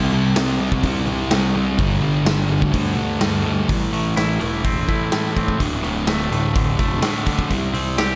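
Quiet-loud alternative rock at 126 BPM in a straight 4/4, this short cut from a longer piece feels dark and angsty. Two thick fuzz guitars open together on a distorted riff, one up front and the other sitting in the background until it drops out at 3.7 seconds, moving over C5 and G5 power chords. Beneath them a picked electric bass with overdrive adds a round, fuzzy low end, while a big acoustic rock kit enters at 0.4 seconds with a punchy kick, medium-tuned snare and hi-hat placed up front in a natural, roomy sound. From 3.7 seconds a bright, clean, twangy electric guitar joins with picked arpeggios as the harmony shifts through Am, D5 and back to C5. Light reverb and a small-room ambience frame the mix.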